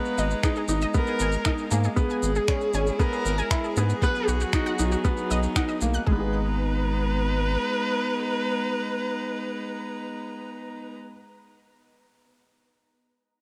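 A steady 4/4 pulse at 117 BPM drives this melancholic, intimate piano and strings electronica piece in G# minor, cut from a longer work and opening on a drop that runs until 6.1 seconds. A soft, tape-warm electronic kick sits up front alongside layered electronic shaker and finger snaps with a small-room character, while a round, deep analog bass pumps against the kick until it drops out at 7.6 seconds. A woody upright piano carries a riff through digital delay over the full length, and a lush, detuned unison pluck spins bright arpeggios in the background, pumping and echoing until 6.3 seconds. Above them, a dark, distant viola sings an expressive melody with vibrato and portamento, cushioned by a rich string quartet holding floating, sul tasto chords that breathe with sidechain pumping. The harmony moves from G#madd9 through E/G# to B before returning to G#madd9, and the whole piece sits in light reverb.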